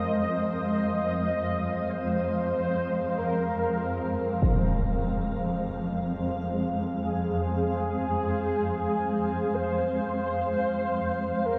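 A cavernous, desolate wash of reverb, vast and slow to decay, surrounds this dark ambient drone in F minor, which drifts in free time over a single F minor chord and is cut from a longer piece. A round, horn-like synth lead carries the melody up front with vibrato, chorus and shimmering echoes, while a blurred granular cloud pad holds sustained chords and a swarming, nasal, detuned drone sits low underneath. Far back, a resonant sawtooth texture bubbles through random filter steps, and a single huge, dark impact lands at 4.4 seconds.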